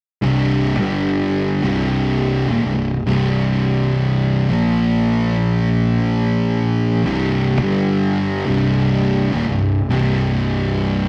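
Two dark, up-front fuzz guitars and a growly, overdriven fingered bass come in together at 0.2 seconds, grinding out a sludgy, brooding metal riff in a swung 4/4 over power chords and a C minor chord, heard in a rough rehearsal-room recording with a stone-room reverb, in a fragment cut from a longer piece.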